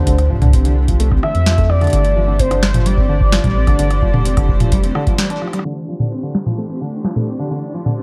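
IDM at 129 BPM in 4/4, glitchy and playful, where a velvety, chorused synth lead carries the melody until 5.2 s over a cloudy granular pad, a felt-muted upright piano with audible action noise playing filtered, delayed arpeggios, a round sine sub bass, a deep tape-warm electronic kick and a booming analog drum machine with crisp snare and metallic hats, before a break at 5.2 s gives way to a filter sweep and a D7(no3) chord at 5.7 s as a faint, flickering grainy texture enters at 6.7 s, all within a dark production in this short cut from a longer piece.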